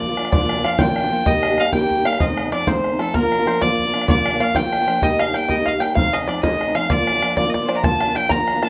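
Spirited and driving, this Celtic slide in G minor moves at 128 BPM in a straight 12/8, with a nasal, reedy fiddle carrying the melody up front while a twangy, fingerpicked banjo traces a second line in the same register. A dark, parlour-sized steel-string guitar, fingerpicked and close, supports the harmony through Gm7, Eb and F7 changes. A damped, tight bodhran sits distant in a large room, and the whole short cut, taken from a longer piece, rests in moderate studio reverb.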